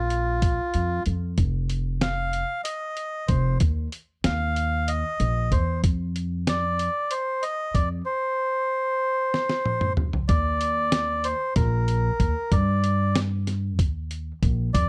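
A dark, lightly reverberant production frames this intricate, bright progressive instrumental, cut from a longer piece and set in an uneven 7/8 with a straight feel. A reedy, breathy melodica carries the melody over a woody pizzicato upright bass, while a gritty, compressed sampler-style drum kit with a thumpy kick and fat snare sits up front with them. A drum fill from 9.3 to 10.3 seconds leads into a new section that opens on an Ebmaj7 chord.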